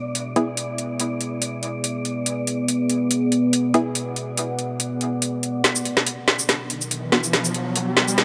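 Overdriven garage drums sit up front in this dark, heavy deep dubstep piece, cut from a longer track, with a woody snare, metallic hi-hats and shaker layered into a produced electronic kit. At 142 BPM in 4/4 with a half-time feel and a light swing on the 16ths, the music moves through B dorian, resting on E before shifting to B minor at 5.6 seconds. A moody sawtooth and sine pad, detuned in unison with a sub octave, holds sustained chords throughout, its slow attack, chorus and built-in reverb giving it a brooding depth while a filter sweeps across it. A breathy, wind-like tuned noise layer drifts through until 5.7 seconds, and a muted, mellow chord stab with a fast attack, a filter pluck and dub echo sounds only a few times. From 5.6 seconds the passage builds, with a drum fill, a filter sweep on the stab and an electronic riser that enters at 6.2 seconds, all within a lightly reverberant space.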